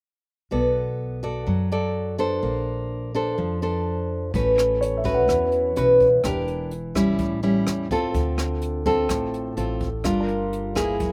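A dry recording with little reverb and an open-air feel carries this romantic, sunny bossa nova excerpt at 126 BPM in a straight 4/4. A full-bodied, fingerpicked nylon-string guitar sits up front from the start, its fresh strings giving a warm classical tone with audible finger squeak, while a woody pizzicato upright bass underpins it low in the mix. At 4.3 seconds the music moves into a new section as a jazz brush drum kit enters with hi-hat, rim click and a boomy kick, sounding as if captured in a studio room. Half a second later a grand piano joins in its middle register, intimate and natural, with long sustain, audible action noise and a slapback echo. The harmony drifts through rich jazz colours, from Bm7 and Bbmaj9 to A69, Em7b5, A7, Dm7 and Gm7, before the passage breaks off at 11.1 seconds.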